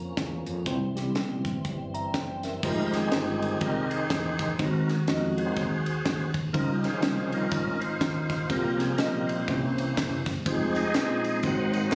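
Uptempo gospel with a fervent, solemn swing, where a full, lightly overdriven tonewheel organ through a slow rotary speaker and chorus vibrato holds chords and then takes a solo from 2.6 seconds over a round, hollow-toned fretless bass, a tight funk kit with bright cymbals and a high-tuned snare, and a mellow tine electric piano, while distant tambourine and group handclaps arrive at 10.5 seconds in this phone-captured clip of a longer piece with club reverb.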